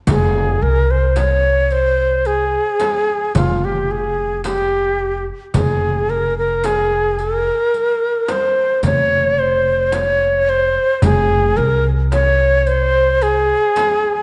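Opening together at 0.1 seconds, this Arabic maqam ensemble fragment moves at 110 BPM in a straight 10/8 in F minor: a breathy, reedy ney with vibrato carries a longing, soulful melody up front over a woody, thumpy pizzicato upright bass, while a crisp metal-shell darbuka, a vintage band-limited frame drum and a riq's bright jingles sit in the background, the whole recording bathed in moderate concert-hall reverb and colored by worn, warbling cassette tape with pitch drift, the bass stopping at 13.5 seconds before the ney closes at 14.2 seconds.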